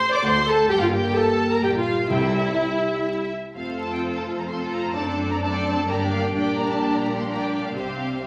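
Spirited and graceful, this quick classical-period movement for symphony orchestra moves at 128 BPM in 3/4 in F major, and it is cut from a longer piece. A clear, lush violin section carries the melody from 0.2 s, sounding focused and distant with vibrato, while a second, bright violin section adds a supporting line from the start. An up-front viola section fills in the accompaniment with a rich, smooth tone, and a mellow, punchy French horn section holds sustained chords. Cellos and double basses sit in the background on the bass line, even and bowed. Timpani struck with medium mallets sound briefly between 2.1 and 2.8 s, the harmony cadences on F at 3.6 s as a new section begins, and a reverberant recital-hall ambience and vinyl crackle color the recording.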